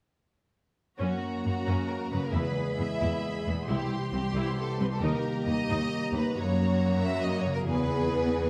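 A straight 3/4 pulse at 135 BPM drives this soaring, heroic cinematic passage in F# mixolydian, cut from a longer piece, with the whole ensemble entering together at 1.0 s and moving through F#, E, C and D# chords. High bowed violins carry the lush vibrato melody above a rich second violin line and distant, even violas, while a dark, soft-attacked French horn section holds sustained chords in the background. A warm concert harp rings out fingerpicked arpeggios over a focused cello bass, all set in the wet reverb of a recital hall.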